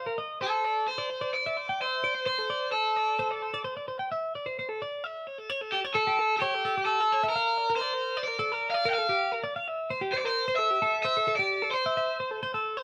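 A moderate stone-room reverb with a 1.1-second tail surrounds this short rock fragment, captured as a band playing live together in one room. At 130 BPM in a straight 5/4 with tuning set to A4 = 435 Hz, the mood is intricate and wistful. A bright, overdriven semi-hollow guitar carries the picked melody up front between G4 and G5, while a clean, compressed twelve-string electric guitar plays picked arpeggios in the same register at a lower level, its tone gently warm. The harmony moves from Amadd11 through A7, a rootless Gm7 and C7 before settling on a rootless Gsus4 at 12.0 seconds. A new section begins at 5.0 seconds, and the melody guitar stops at 12.6 seconds as the twelve-string rings on briefly before the cut.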